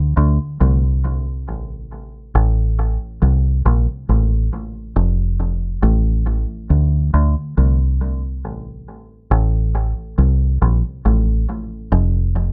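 A dry, close recording with the feel of a 1970s studio and a touch of light reverb frames this laid-back reggae cut, taken from a longer piece, at 69 BPM in a straight 4/4. A deep dub fingered electric bass plays alone for the full 12.5 seconds, sitting up front with a dark, round, foam-muted tone that sounds direct and amped. It moves between F1 and D2, with tape echo trailing its notes.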